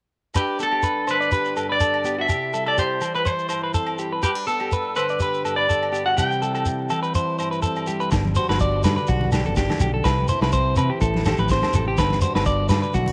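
A slightly broken-up electric guitar carries the melody up front with tape echo until 7.6 s in this joyful, danceable highlife guitar band piece at 124 BPM in G major, riding lightly swung sixteenths over twangy clean electric guitar arpeggios, a dark picked acoustic guitar with finger squeak, ringing agogo bells and a grainy, close shekere, before a round, punchy fingered electric bass and a natural-sounding vintage drum kit enter at 8.1 s, with distant, very quiet congas just after, all set in moderate spring reverb.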